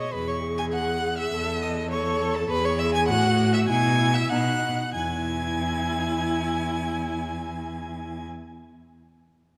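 In a straight 2/4 pulse that slows from 1.9 to 4.9 seconds, this lively, cheerful fragment of a quick classical-period string quartet movement sets a high, expressive first violin melody with vibrato and portamento over a soft-attacked, close second violin line, a warm viola accompaniment and a clear, smooth, up-front cello bass, all four bowed by single players and wrapped in a wet concert-hall reverb.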